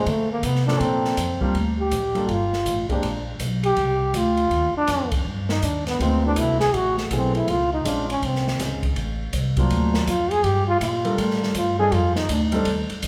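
Swinging and playful, this short small-group swing and bop passage at 162 BPM puts a breathy, whispered trombone up front, soloing with light vibrato and scooped notes, over a woody, bright pizzicato upright bass, an airy open drum kit with dark cymbals and a boomy kick, and a deep-toned concert grand piano that comps from the start, drops out at 3.0 seconds and returns at 6.0 seconds, with the band playing live in one room and bathed in a large studio reverb.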